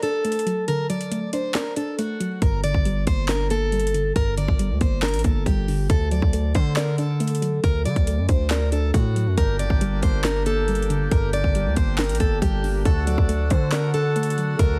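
A brooding, dark trap cut at 138 BPM in a half-time feel, set in G harmonic minor and moving between D and G minor chords. A picked plugged-in steel-string acoustic guitar carries the melody from the start, its boxy tone with audible finger squeak trailed by digital delay and plate reverb, while a soft round pluck with a nasal, chorused edge fills in the accompaniment beneath it. The trap drum kit sits up front with a hard-clipped kick, sharp snare, handclaps and metallic hats, and after an opening break the distorted 808-style bass enters at 2.4 seconds, heavy and saturated with a fast attack. A reedy, breathing hand-pumped harmonium joins at 9.4 seconds with sustained chords bathed in plate reverb, lower in the mix than the other parts. The whole excerpt has a heavily compressed, radio-like sound with light digital ambience, and it is cut from a longer piece.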